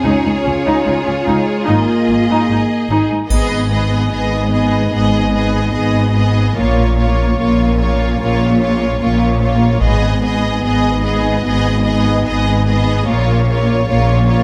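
Solo taiko drums, heavy-sticked and close, strike in at 3.3 s and again at 9.8 s, driving this heroic, dark epic orchestral film score at a slow 74 BPM in 4/4, moving into G# dorian as a lush violin melody enters. Beneath it, a second violin line, expressive viola and cello sections with vibrato, and a rich bowed double bass section carry the harmony, while a dark, soft-attacked French horn section holds sustained chords in the background. A triangle adds a faint touch at the first taiko entry, and a moderate scoring-stage reverb gives this cut from a longer piece a full, spacious sound.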